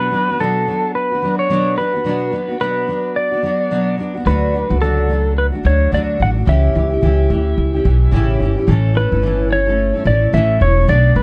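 A clean, twangy lap steel guitar sings a wistful, tender melody over fingerpicked steel-string acoustic guitar from the opening, the acoustic double-tracked and full-bodied in this acoustic pop excerpt at 109 BPM with a gentle sixteenth-note swing. At 4.3 seconds a woody, thumpy pizzicato upright bass joins up front as the harmony moves from B minor through D and C-sharp diminished to A at 8.7 seconds. Light reverb and a dark, warm production keep the sound intimate and close.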